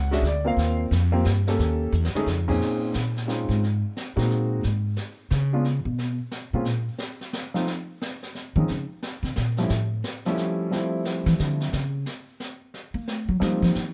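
Jazz piano trio in a swinging, moody vein, moving in a brisk three with a swung feel, heard as a short excerpt from a longer piece. The concert grand carries the melody up front with an intimate, natural tone, deep low end and audible action noise, bathed in plate reverb, and it takes a solo through the opening 2.6 seconds. A brief drum fill around 1.9 seconds leads into the upright bass solo, which runs from 2.6 seconds to the end with a woody, thumpy pizzicato sound from steel strings, placed close and prominent. The brush kit sits distant and roomy in a small space, with dark cymbals, a high-tuned snare and a boomy kick, touched by brushes on snare, hi-hat, toms and crash. The harmony drifts through rich minor and suspended colours, including Bbm11, Db7(no3) and A7b13, with a couple of chordless moments, all framed by a dark, warm production with light reverb.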